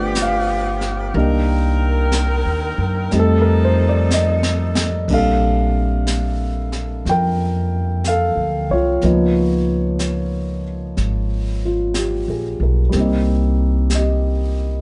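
Swung eighths at a slow 61 BPM in 4/4 set a late-night, romantic mood for this jazz excerpt in Bb major, with pizzicato upright bass sounding woody and up front beneath a mellow baby grand piano whose long sustain and audible action noise feel intimate. A bright saxophone section holds soft-attacked sustained chords with vibrato until 5.1 s, while a jazz kit played with brushes brings dark cymbals, a high-tuned snare and a boomy kick, adding a drum fill from 4.1 s. The band plays live together in one room with moderate studio reverb as the harmony moves from G7 and Cm7 to a lush Bbmaj13 and Db13.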